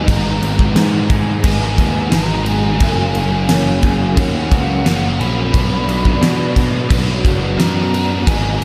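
A hazy, dreamy shoegaze and dream pop excerpt soaked in lush hall reverb, where a biting, double-tracked overdriven guitar riff with ensemble chorus sits up front over a growly picked electric bass and a gated 80s drum kit with a fat snare, punchy kick and bright cymbals, while a mellow, hollow concert flute with vibrato and delay floats in the background across G#m, F#6 and Bm.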